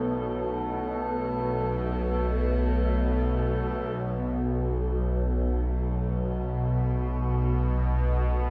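Floating in free time, this unsettling dark ambient drone excerpt is anchored by a tense, string-like bowed drone sitting up front in the low register, its sustained tone coloured by phaser, vibrato and a breathy noise layer. Around it hang an eerie, nasal metallic drone with inharmonic shimmer and chorus, and a very quiet, deep, moody pad that holds B9sus4 before dropping out of the mix at 4.0 seconds, as the harmony shifts to Asus2/B. Everything sits in a dreamy mix soaked in lush hall reverb with a 3.0-second tail, lending the slow-blooming sounds a cavernous, haunted stillness.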